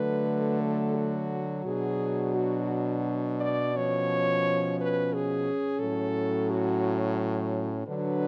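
Classical and lyrical, this brief excerpt from a longer piece for horn quartet moves in a flexible, rubato triple metre with an elegiac, yearning mood, its harmony passing from D through B minor and C#7 over B to F# minor. A dark, close-miked horn carries the melody up front, joined by a second dark horn with a smooth top on a lower line, while a mellow horn with light vibrato supplies accompaniment and a warm horn, also with light vibrato and placed forward, anchors the bass. Light reverb and close, detailed microphones give the four horns an intimate, finely textured presence.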